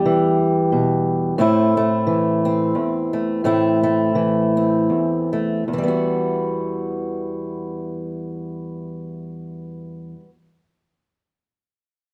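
A moderate large-studio reverb surrounds this short cut from a longer folk piece, placing a single fingerpicked acoustic archtop guitar up front in a room where it was played live. The mood is haunting and intimate, in E minor and 3/4 time, moving at roughly 76 to 90 BPM with a light swing on the eighth notes. The archtop plays alone from 0.0 to 10.3 seconds, ranging from E2 up to G4, its tone warm with an audible finger squeak on the strings. The harmony opens on Em, shifts to Am at 1.4 seconds, where the tempo slows through to 5.7 seconds, and moves to an Emadd9 chord at 5.7 seconds.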